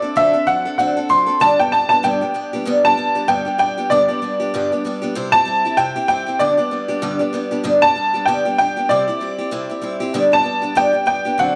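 The piano and guitar enter together at 0.0 seconds. A bright, slightly detuned upright piano carries the melody high in its range over a boxy, picked acoustic guitar on old strings, both up front, in this rollicking, retro rock cut at 193 BPM with a swung eighth-note feel in G major. The harmony moves from a D7 through G and C, and the pair play in a small room with light reverb until 11.6 seconds, a short slice of a longer piece.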